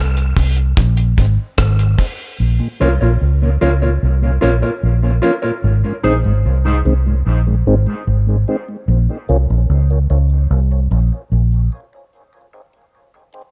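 A foam-muted, punchy electric bass sits up front in this spacious, meditative dub reggae cut at 74 BPM in Bb minor, joined by a mellow tonewheel organ with chorus vibrato, slow rotary speaker and dub echo that carries a filter sweep through the opening break, a dry reggae drum kit with a tight kick, hi-hat and rim click heard only until 2.2 seconds, and a dark, clean fingered electric guitar drifting through dub echo from 2.8 to 6.1 seconds over Ab and Bbm chords in an echo-heavy mix with light small-room reverb.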